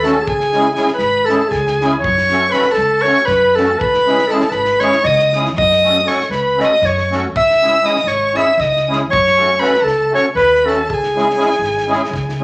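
Balkan folk in the manner of a wedding band, this bittersweet, virtuosic fragment is cut from a longer piece and moves at 237 BPM in eighths through a straight 7/8 in C# minor. A mellow clarinet carries the melody up front in a classical solo style with a smooth top, while a warm violin sits above it on a second line, bowed by one player with vibrato, portamento and a soft attack, expressive in character. Beneath them a musette accordion fills out the accompaniment with a reedy, shimmering, dark tone, and an upright bass plucks pizzicato on steel strings with a woody depth. A natural country drum kit of kick and snare stays in the background, airy and polished, with a punchy kick and a medium-tuned snare. The harmony rocks between C#m and F#m throughout, and the whole recording is bathed in a large studio reverb and a layer of vinyl crackle.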